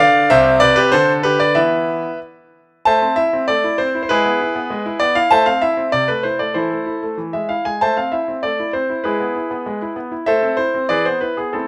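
A classical-period piano sonatina in A minor at 96 BPM in 2/4, played with rubato and carrying a dramatic, serious mood across this short 11.7-second passage cut from a longer piece. A gleaming concert grand piano plays alone, spanning C2 to A5 with a brilliant, polished tone, deep bass and an up-front presence, captured by close, detailed microphones in light reverb. After a brief opening, a new section begins at 2.9 seconds and circles repeatedly between Am and E chords through to the end.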